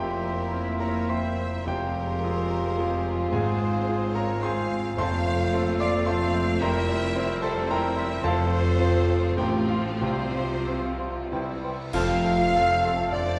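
A clear, up-front concert grand piano with deep bass and long sustain carries a passionate, lush romantic melody in rubato 3/4, joined by a rich, vibrato-laden violin section, background clarinet, airy flute and cor anglais lines, mellow bassoon, viola, French horn chords, cello and double bass, with hard-mallet timpani strokes at 5.0 and 10.0 seconds, bright cymbals and bass drum from 8.2 seconds, and a brief full-orchestra accent at 11.9 seconds where trombones, trumpet stabs and tuba enter, all in a wet recital hall.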